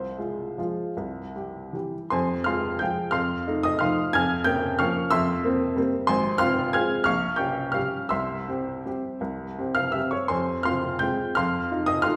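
A clear upright piano carries this classical waltz alone, its woody tone and audible action noise giving the playing an intimate, present quality. The mood is nostalgic and wistful, with a lilting triple metre pulled about by generous rubato. The piano spans from low bass notes to bright high treble, and its short sustain keeps each chord crisp even as the harmony wanders through darkened, chromatic colours. A brief opening phrase gives way at 2.1 seconds to a longer passage that runs to the end at 12.2 seconds, where the music stops mid-piece as part of a longer work. The instrument sits up front with a polished finish, yet the wet recital-hall reverb places the listener further back in the room.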